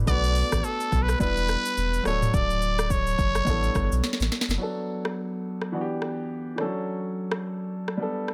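A raspy, growling trumpet leads this smooth, hypnotic afrobeats cut at 106 BPM, its brilliant, gritty solo line carrying light vibrato and a digital delay before it drops out at 4.3 seconds. Beneath it, a round, dark sine sub bass holds the low end until 4.6 seconds, while a natural, up-front grand piano voices Bm7, Em7 and Dmaj7 through to the close. A produced afro-pop kit with a deep kick, sharp snare, rim clicks, shaker and toms keeps a swung sixteenth-note feel, rolling through a fill at 4.0 seconds into the second section, all inside a digital ambience.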